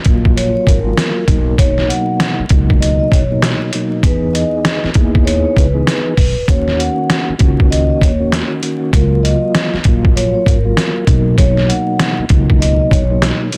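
A swung boom-bap groove opens the excerpt, its gritty, pitched-down sampler-style drums sitting up front with a thumpy kick, medium-tuned snare and hi-hat that sound re-recorded in a small room. A woody, growly pizzicato upright bass and a soft, flute-like tonewheel organ, spinning through a fast rotary speaker with key click and a cassette-tape tint, join at 0.1 seconds. Then a vibraphone played with soft mallets rings out a metallic, echoing melody from 0.4 seconds, the whole dark, reflective piece wrapped in digital ambience, vinyl crackle and a dense, heavily limited modern master.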